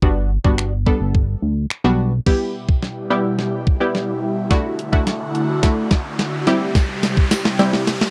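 A dry, close recording in a 1970s studio style opens this bittersweet, driving dance-pop excerpt in E minor at 107 BPM, where a clean 12-bit drum machine with a thumpy kick and fat snare sits up front beside punchy, warbling chord stabs that pump with the sidechain through chorus and phaser. A glossy, dark chorused synth bass holds the low end only until 2.2 seconds, and then an airy, breathy pad enters with sustained chords for a build-up with a drum fill over Em, Dadd9 and C. An electronic riser climbs in from 3.6 seconds, and a jingly tambourine sits in the background near the end.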